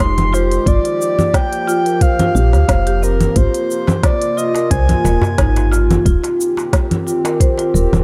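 The groove sits at 89 BPM in 4/4 with a gentle 16th-note swing, giving this organic downtempo excerpt an unhurried, earthy pulse. An organic electronic drum kit runs throughout with congas, crisp hats, shaker and a woody snare, tape-warm and re-recorded in a small room. A soft electronic kick joins at 0.7 s, and a deep, metal-shelled darbuka played with hard hands adds percussion from 3.9 s. A round, decaying FM bass sits up front with tube saturation, while a marimba with rosewood bars spins delayed arpeggios over a warbling, detuned tape-like pad with chorus, reverb and sidechain pumping. A breathy, flute-like synth lead carries the melody with chorus, tremolo, vibrato and digital delay until 5.7 s, over chords moving from Fm9 through Gm7 and Ab69 to Eb6, all framed in a dark, warm production with light reverb.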